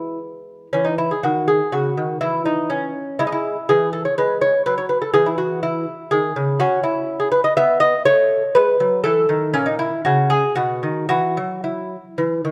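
Flowing and dance-like, this short cut from a longer piece is a classical, baroque-style dance in triple metre, played with a supple rubato feel. A solo lute carries the whole passage from start to finish, its fingerpicked gut strings giving a mellow, delicate voice. The double courses, some of them doubled at the octave, add a shimmering fullness to each note, and the instrument sits up front in the sound. The harmony moves from E through C#m and C#m/E before drifting toward Badd9, F#m, a darker A#m7b5 and B, then settles into a bare, chordless moment at 11.1 seconds. A moderate recital-hall reverb surrounds the lute with a gentle, airy sense of space.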